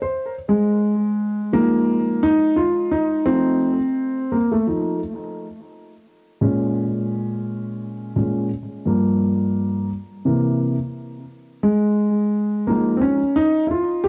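Cassette tape coloring and a wet booth ambience give this home recording a close, worn character as a dark concert grand piano plays alone from 0.0 to 14.1 seconds, its mellow, smooth tone sitting up front with deep bass, audible action noise and a touch of analog delay. The hip hop groove moves at 86 BPM in 4/4 with a swung sixteenth feel, and the piano works through Fm7, F7, Bbm7, Gm7 and C7 before settling back on Fm7 in F minor. The mood is nocturnal and smoky, with an intimate, vintage quality in this short piece cut from a longer work.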